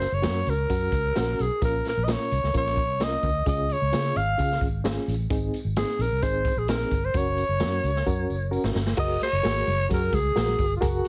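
Uptempo 1960s-style soul at 130 BPM, uplifting and joyful, with a raspy, gritty alto saxophone carrying the melody up front over a worn, reedy electric piano with fast tremolo, a dark, foam-muted fingered bass, a punchy swinging big-band drum kit, a jingly tambourine in the background, and very quiet thick-skinned congas entering at 9.0 seconds after a drum fill, all through a heavily compressed radio-style sound with light reverb.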